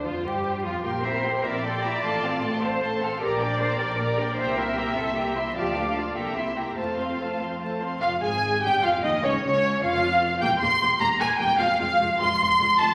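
Soaked in the wet reverb of a scoring stage and flecked with vinyl crackle, this lively, cheerful fragment of a quick classical-period movement for string orchestra sways in a flexible 6/8 lilt. Muted violins carry a veiled, vibrato-rich melody up front while a second violin line adds its own voice. A close, soft-attacked viola accompaniment, a distant cello bass in the background and smooth-topped double basses round out the dark, con sordino ensemble, and the harmony takes a shadowed turn at 8.0 s.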